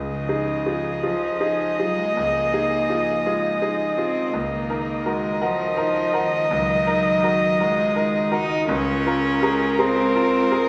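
Neoclassical piano and strings in Db major, tender and intimate, moving at a rubato 55 BPM in 6/8 through a short passage cut from a longer piece, with chords shifting from Dbadd9 to Ebmadd9/Db at 4.3 seconds and Bbm7/Db at 8.7 seconds. Up front, a dark, close solo violin carries the melody, bowed sul tasto with light vibrato and a soft attack, while a rich, pure cello floats a second line from further back. A brilliant concert grand with deep bass provides the accompaniment, and a chamber string section holds sustained chords quietly in the background, all set in the moderate reverb of a concert hall.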